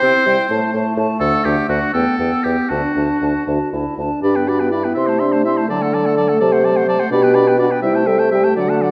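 A pure, silver-toned flute carries the melody high above the ensemble, its tongued line shaded with vibrato and set slightly distant in the sound. This spirited, lively classical-period movement for wind quintet moves in a lilting 6/8 with a flexible, rubato feel. Beneath the flute, a clear oboe with light vibrato sings a second line, while a dark, soft-attacked French horn, heard close up, and a warm, punchy clarinet fill out the accompaniment. A mellow bassoon sits up front on the bass line, also touched with light vibrato. All five instruments play together from the start to 8.9 seconds. A new section begins at 4.2 seconds, where the harmony opens on G and continues through chords such as Am/C and D7/C, all bathed in the generous reverb of a recital hall, in a passage cut from a longer piece.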